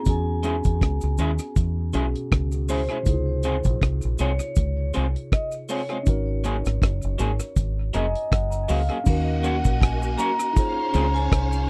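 A swung 80 BPM groove of dark, dry drum kit with tight kick, rim clicks and tape echo, punchy foam-muted dub bass and a cabasa carries this smooth, romantic lovers rock reggae excerpt in Db major, where a ringing, metallic vibraphone melody with tape echo sits over a worn, slightly out-of-tune tine electric piano that plays a fill from 7.6 s, slightly broken-up lo-fi guitar stabs, and a shimmering, sawtooth string machine violin line with ensemble chorus that enters at 9.1 s, captured in a close, dry 1970s-style studio sound.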